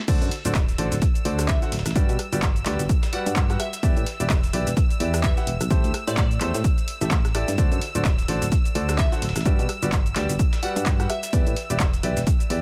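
A swung, pumping groove drives this euphoric, joyful piano house drop, built on a punchy, tape-warm electronic kick up front, a punchy analog drum machine with crash, handclaps, hi-hat, rim click and shaker, and a very quiet, gritty sampler-style kit adding overdriven hi-hat and snare. A clear grand piano riff with digital delay rides over a round, mellow FM bassline, both pumping with sidechain, while a studio violin section holds biting, lightly vibrato chords up high through the D7, Gmaj7, Em7 and Am7 changes. From 1.5 seconds a crystalline, detuned wavetable pluck with chorus and delay glints in the background, and the dry mix keeps every part close and present.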